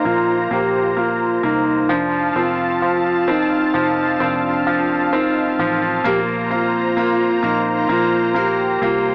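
Tender and emotional, this slow pop ballad excerpt at 65 BPM in Bb major sets a mellow, horn-like detuned sawtooth synth lead with chorus and vibrato over bright, up-front concert grand piano, a lush chorused unison pad and a dark, round, foam-muted electric bass, with a full-bodied picked steel-string acoustic guitar arpeggiating in the background from 6.1 s as the harmony moves from Bbsus2 to F7 and back, the mix set in moderate plate reverb and carrying the worn, warbling pitch drift and small-speaker sound of old cassette tape.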